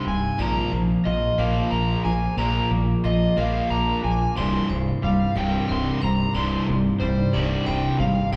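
This post-rock excerpt in C minor moves at a slow 60 BPM in a straight 6/8, building toward a cathartic, cinematic lift over two chords, Bb7 and then Cmadd9 at 4.4 seconds. An overdriven slide guitar carries the melody up front in a high register, while a growling, punchy fingered electric bass with overdrive enters at 0.1 seconds to anchor the low end. A compressed, distorted electric guitar drives a riff from the start, and a fuzz guitar joins at 0.4 seconds with a riff of its own in the background. Underneath, a clean, scooped twangy electric guitar and a ringing vibraphone struck with hard mallets, its slow motor vibrato shimmering, both play arpeggios in the background. A very quiet, ethereal pad with a slow attack and detuned chorus sustains chords beneath it all, and the whole build-up sits in a wet recital hall reverb that lends it a spacious, churchlike air.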